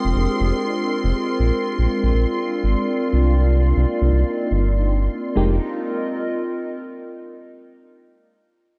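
Hypnotic and smooth, this short deep house excerpt at 121 BPM in F dorian, with a swung 16th feel, sets a round, deep analog bass up front under silky, phased string-machine chords with vintage sampler grit, a bright, detuned analog string pad high at C6, and a warbling, nostalgic tape-like pad that carries on alone to 7.3 s, while a dark FM electric piano drops a brief chorused, delayed stab at 5.4 s as the Fm9, Bb9 and Cm11 changes return to Fm9, all in a dry, gritty hardware recording with light digital ambience.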